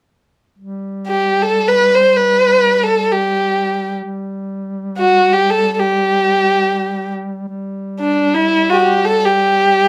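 A single bowed violin sits up front, its woody tone and vibrato carrying the melody between D4 and C5 from 1.1 seconds in this stately, warm Persian modal piece in free time, set in G dastgah mahur with tuning at A4 = 438 Hz. Beneath it, a dark duduk enters at 0.6 seconds and holds a G3 drone in folk style, its vibrato, scooped notes and smooth top sitting well back from the violin. A moderate studio reverb rounds out this short section cut from a longer work, with both parts continuing to 9.9 seconds.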